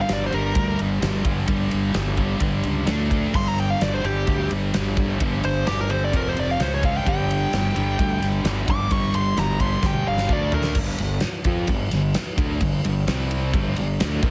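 A straight 4/4 pulse at 129 BPM drives this menacing hard rock excerpt, with a gated 80s drum kit up front, its punchy kick, fat snare and bright cymbals ringing in a big, airy room, and a drum fill from 9.8 to 10.8 seconds. Over a growly, fuzzed fingered bass and two double-tracked picked riffs, one sludgy and overdriven, the other distorted and set in the background, a nasal lead guitar with a parked wah plays a solo from the start until 10.8 seconds, coloured by overdrive and slapback echo. At that point the solo and the background riff drop out, leaving the sludgy guitar, bass and drums to carry the heavily compressed, radio-style mix through a passage moving from G5 through C5 to G minor.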